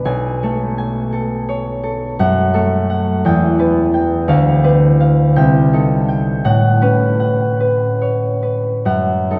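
Mysterious and wistful, this brief classical passage cut from a longer piece features a solo concert harp, mellow, thumb-plucked and ringing, placed up front in a vast, echoing cathedral, drifting in a rubato 6/8 at roughly 45-58 dotted-quarter beats per minute across a range from B1 to G#5 as its harmonies slide from Amaj7/B through F#m, Em6, Dm6 and Cm6 to A69 before settling on F#m6 near 8.9 seconds.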